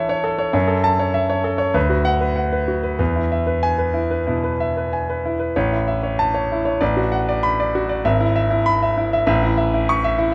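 A solo concert grand piano opens this brief passage from a longer classical work, a virtuoso study in A major with a brilliant, sparkling character. The tempo sits around 97 BPM in 4/4, though the rubato feel lets the pulse stretch and bend, and the instrument is tuned slightly high, with A4 at 445 Hz. The piano sounds clear and smooth with a vintage quality, placed up front, and its deep bass anchors a range that spans G#1 to C#6. The harmony moves from A through F#m7, Bm/D and a long E before returning to A at 5.5 seconds, then passes through Bm7/A and E/G# to settle on A again at 9.3 seconds. Light reverb and a dark, warm production frame the sparkling playing, giving the roughly 10-second passage a gentle glow.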